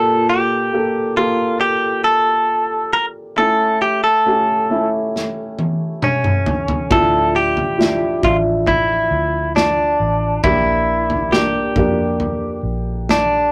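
A slow, straight 4/4 pulse at 68 BPM carries this heartbroken, longing pop ballad in D minor, where a bright, twangy, compressed clean electric guitar sings the melody over a natural-sounding baby grand piano, a small-room country drum kit with a punchy kick enters at 5.2 s with a fill, and a dark, round, foam-muted fingered bass joins at 6.9 s, captured in a rough rehearsal-room recording with a wet booth ambience.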